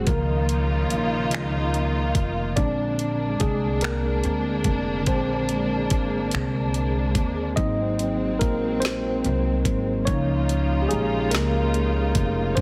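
A slow, yearning six-eight R&B groove, cut from a longer piece, with a mellow tine electric piano taking the solo up front, clean through its built-in speakers. Bowed studio strings hold soft-attack sul tasto chords with vibrato beneath it, while a dark, woody pizzicato upright bass and an electronic kit of finger snaps, metallic hi-hat, knocking kick and snare, re-recorded in a small room, give the piece its sultry feel. The harmony moves through Db69, Bb9 and Ab7 before returning to Db69 at 10.1 seconds, and the mix carries light reverb and a heavily compressed, radio-like sound.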